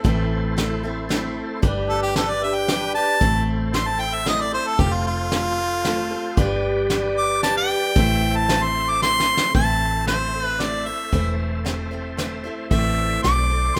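Heartbroken and lonesome, this honky-tonk and classic country excerpt in 3/4 features an up-front harmonica solo over its first 9.5 seconds, backed by a bright, boxy picked parlour acoustic guitar, a lightly overdriven tonewheel organ through a slow rotary speaker with chorus vibrato, a dark, round foam-muted electric bass, and a soft brush drum kit with a fat snare and tight kick that plays a fill starting at 9.0 seconds, all set in a moderate large-studio reverb.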